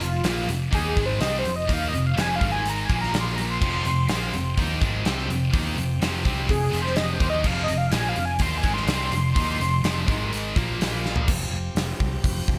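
A velvety, detuned synth lead carries the melody and solo in this short cut from a powerful, energetic hard rock piece, its smooth sawtooth-and-triangle tone warbling with vintage chorus, a filter sweep and a slapback echo. Beneath it, two heavy, high-gain electric guitars grind out picked, distorted riffs that sit in the background, while a dark, round, punchy picked bass anchors the low end. The gated 80s drum kit sounds up front and polished, with a tight kick, a medium-tuned snare, bright cymbals, hi-hat and toms ringing in an airy gated room. At 3.6 seconds a very quiet tonewheel organ slips in with full, shouting sustained chords through a stopped rotary speaker. A drum fill lands at 11.0 seconds, and the guitars drop out at 11.3 seconds, leaving bass, drums and organ in a brief closing passage, all set in a small room reverb over a straight 4/4 drive.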